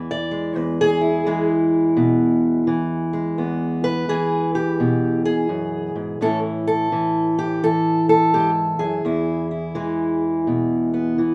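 A loping swung 4/4 drives this swaggering, gritty acoustic country blues excerpt, where a lone fingerpicked steel-string parlour guitar, dark and boxy and set up front in light reverb, ranges from E2 to D5 as it moves from E to A at 6.2 seconds and back to E at 9.1 seconds.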